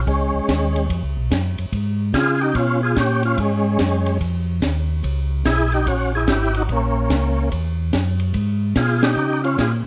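A percussive tonewheel organ carries the melody up front, its full, lightly overdriven tone marked by second harmonic percussion, key click and chorus vibrato through a slow rotary speaker with plate reverb, in this bluesy, swinging soul jazz organ trio excerpt cut from a longer piece. Beneath it, a mellow, round tonewheel organ holds down the bass line through its own slow rotary speaker, while a compact cocktail drum kit with a high-tuned snare and punchy kick sits lower in the mix, playing hi-hat, ride cymbal, snare and kick in a small, smooth-sounding room. The harmony moves from Db7 to Gb7 at 5.0 seconds and back at 8.3 seconds, with a band accent at 9.0 seconds.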